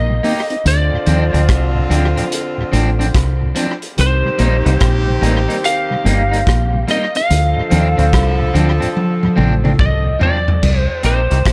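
A twangy, lightly driven lead guitar melody with dub echo opens over a smooth-topped horn section line and a round, foam-muted dub bass, as a laid-back, hypnotic roots reggae groove at 72 BPM in C dorian settles in with a soft, flute-like tonewheel organ in the background, an electric guitar at the edge of break-up echoing its accompaniment, and a punchy, dark-cymbaled vintage drum kit with tape echo that plays a fill from 9.0 to 10.6 seconds, all moving between Cm7 and Dm7 in a short cut from a longer piece.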